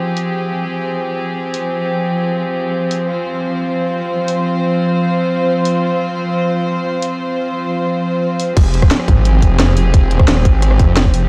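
A straight 4/4 pulse at 175 BPM drives this dark, mechanical slice of technical drum and bass in F minor, cut from a longer piece. A rich chamber string section holds sustained, bowed chords on F minor from the start, earthy and smooth on top with light vibrato, roughened by vintage 12-bit sampler grit and breathing with sidechain pumping. From 0.2 seconds a layered electronic drum kit plays crash cymbal, hi-hat, rim click and a cracking snare, with the hats, snare and cymbals all dulled by low-pass filtering. At 8.6 seconds the drop arrives: a tight electronic kick and a snarling, growling saw bass enter together, the bass detuned, distorted and compressed, with a moving notch sweeping through its tone as it sits up front in its low register. The whole mix is soaked in a huge, dreamy ambient reverb with a long tail of 8.7 seconds.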